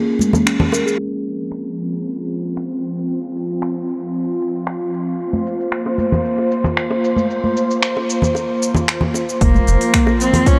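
Organic downtempo at 114 BPM with a hypnotic, warm mood, opening on a brief break over Bbm where a round, meditative steel tongue drum plays arpeggios through tape echo, with a band accent at 0.5 seconds. A deep house kit of metallic hats, finger snaps and shaker, overdriven and layered, runs throughout, while ringing, close and dry congas and bongos appear briefly at the start and return from 5.3 seconds. An airy, breathy pad with chorus and sidechain pumping holds sustained chords from 1.4 seconds under a long filter sweep over F5 and Bbsus2 harmony. At 9.4 seconds the tongue drum returns with a punchy overdriven electronic kick, a short deep analog bass note and a rich, bowed cello melody with smooth vibrato, all set in a dark production with huge ambient reverb.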